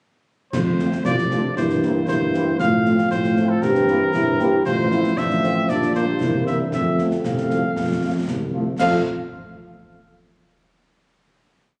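A festive, proud military-style march for wind band in F major, moving at 116 BPM in a straight 2/4. The cornet carries the melody with a light vibrato and classical poise, while the euphonium enters at 1.1 seconds with a soft-attacked counter-melody. The tuba sets down bass on the beats from a distant, roomy position, and the dark trombone section holds tight sustained chords in the background. The French horn section, joining at 0.8 seconds, adds gentle after-beat chords behind the brass, and the percussion pairs a marching snare with concert bass drum on the beat and bright clash cymbals in a live room. The harmony moves from F through C7/G and Gm7/Bb, returning to F at 6.7 seconds before a final chord at 8.8 seconds, all heard through a moderate scoring-stage reverb captured on a phone with club-like ambience and compression.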